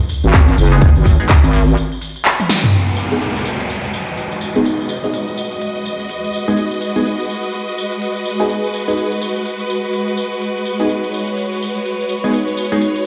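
Over a swung 4/4 groove from a punchy, crisp big-room dance kit of handclaps, hi-hat, snare and toms, a jingly close tambourine and a tight, up-front electronic kick, this gritty, aggressive bass house cut opens with a heavy, detuned wobble bass with overdrive and sidechain pumping and nasal band-passed sawtooth chord stabs drenched in phaser, chorus and delay, then after a break and drum fill a downlifter and a lush, clear bowed symphonic string section arrive at 2.7 s as a filter sweeps the stabs through a large, roomy reverb.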